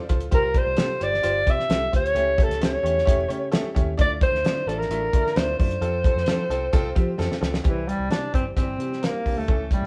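Uptempo 1960s-style soul in C mixolydian at 131 BPM, this danceable, joyful excerpt features an alto saxophone melody with vibrato and a roomy, distant quality, carried over a brilliant, worn baby grand piano with audible action noise and a dark, foam-muted fingered electric bass. A cloth-damped, thuddy drum kit with a fat snare, tight kick and rolled-off top sits up front and plays a fill from 7.2 to 7.7 s, leading into a new section on a C chord after a progression from Csus4 through A7/C#, Dmadd9 and F. The band sounds like it is playing live in one room, with moderate studio reverb and vinyl crackle.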